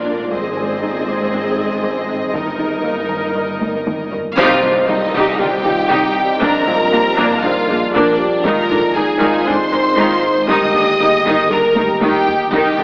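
This tense, futuristic stretch of a hybrid orchestral and electronic film score opens at 118 BPM on clear, up-front violin and viola sections bowing with vibrato over a deep, warbling ambient pad with chorus and built-in reverb. Underneath, a very quiet dark cello section with a soft attack and portamento, a smooth chamber double bass section and a thick, saturated sub bass hold the low end. A round, tine-like thumb-piano-style synth pluck spins gentle arpeggios, while a close, dry taiko ensemble struck with hard sticks sits in the background. After a drum fill, a band accent at 4.4 seconds brings in a lush, focused high violin melody and mellow French horn chords, marked by a huge, bright impact. The harmony moves through A-flat, E-flat over G, C minor and B-flat, and another taiko fill arrives at 11.8 seconds. The mix sits in a scoring-stage reverb but carries an AM radio sound.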